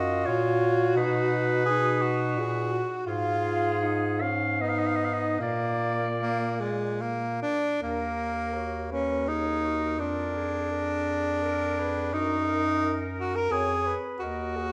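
Classical chamber music for a single-reed quartet in Eb minor, this melancholic, yearning fragment moves in a rubato 3/4 at 73-89 BPM. A clear clarinet carries the melody while a distant, roomy alto saxophone with vibrato sings a second line in the background, and an up-front, warm tenor saxophone supplies accompaniment above the bass clarinet's low foundation. A wet recital-hall reverb surrounds the ensemble as the harmony shifts into a new passage at 7.8 seconds and settles on Eb minor at 14.2 seconds.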